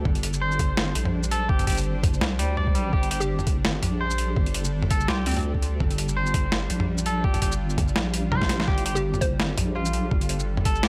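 A detuned sawtooth drone with sidechain pumping and its own reverb holds a Gmadd9 chord over a deep, wobbling, chorused bass in this dark, tense half-time drum and bass cut at 167 BPM in G minor, with a clean, picked electric guitar soon adding bright arpeggios roughened by 12-bit sampler grit and delay. Gritty, pitched-down, overdriven sampler drums with a high-tuned snare, hi-hat, shaker and toms swing over a thumpy electronic kick, breaking into a fill at 8.3 seconds. A hollow, bouncy square-wave pluck with chorus and tape echo plays a short melody from 3.2 seconds and returns briefly at 9.0 seconds, while the bass and kit sit up front in a fairly dry mix.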